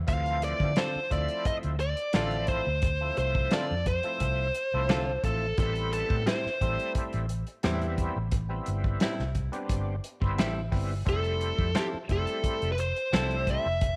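A biting, overdriven lead guitar sits up front, singing its bright lines over the first 6.9 seconds before dropping out and returning at 11.1 seconds in this brooding, soulful slice of straight-eighth soul blues, moving from Dm7 through Am7 to Fmaj7. Beneath it, a thick, gritty tonewheel organ turns through a slow rotary speaker with chorus vibrato and percussive second-harmonic attack, while a clean, compressed guitar recorded direct adds picked stabs. A round, foam-muted bass with transformer saturation and a dark, small-room soul kit with a tight kick and medium-tuned snare anchor everything under light reverb.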